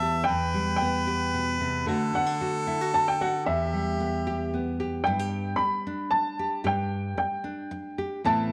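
Piano, harmonica and nylon-string guitar all sound together from the first moment in this reflective, wistful acoustic folk passage, a short cut from a longer piece in a straight-feeling three. The woody, natural upright piano carries the melody high in its range, while the clear, soft-attacked harmonica sits up front with a classical-style second line beneath it until it drops out at 4.8 seconds. The fingerpicked guitar gives warm, deep classical accompaniment up front, its finger squeaks adding an intimate touch. The harmony moves from E minor through D and back before brightening to G as a new section opens at 5.1 seconds, where piano and guitar carry on as a pair to the close at 8.5 seconds. A moderate echo-chamber reverb and small-room ambience give the trio a gentle, close sense of space.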